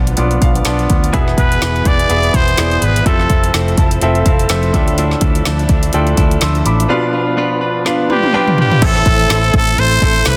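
Dramatic and driving, this piano-driven pop excerpt in A minor moves at 125 BPM with a light 16th-note swing, as a clear, polished grand piano with short sustain and piano fills at 0.2 and 3.5 seconds plays alongside a thick, slightly overdriven tonewheel organ on slow rotary, a round, foam-muted fingered bass, an up-front deep house kit with a deep kick and woody snare, a compressed clean electric guitar riff from 1.1 to 8.8 seconds, and a raspy, growling trumpet melody with scooped notes, all moving through chords from Bdim and E to Fmaj7 and Dmadd9 before settling on Am at 8.8 seconds in a dense, heavily limited modern master with light digital reverb.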